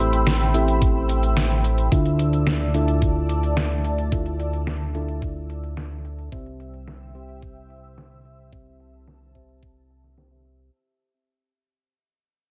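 Lightly reverberant and fading out across its 10.7 seconds, this cinematic, driving synthwave excerpt at 109 BPM sets a lush, detuned unison pad holding sustained chords and a soft, round FM electric piano with tape echo playing dark stabs over Am7, Dmadd9 and C, all while a glossy, pulsing synth bass and a thumpy, up-front electronic kick, which enters at 0.8 seconds, anchor a sampler-style 8-bit drum machine of gated-reverb snare and filtered hi-hats, with filter sweeps running across the drums, pad and piano.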